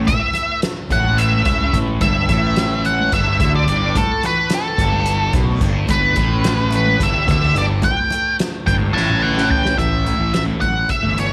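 An up-front octave-fuzz lead guitar carries the melody through this hazy, hypnotic psychedelic rock excerpt in 7/8, its dark, distorted picked tone thrown back by a slapback echo. Beneath it, a thick, double-tracked fuzz guitar drives the riff through distortion and a phaser, while a round, overdriven fingered bass adds a heavy low end. A tanpura drone buzzes and shimmers in the background, giving the whole a trance-like pull. A soft-mallet drum kit recorded in a big room supplies a fat snare and boomy kick, with fills at 1.3 and 8.9 seconds, and very quiet, bright congas with a thin skin tap along until 9.5 seconds. The harmony moves from A to Gsus2, and at 9.8 seconds the music shifts into a new section built on an A5 power chord, all wrapped in studio reverb.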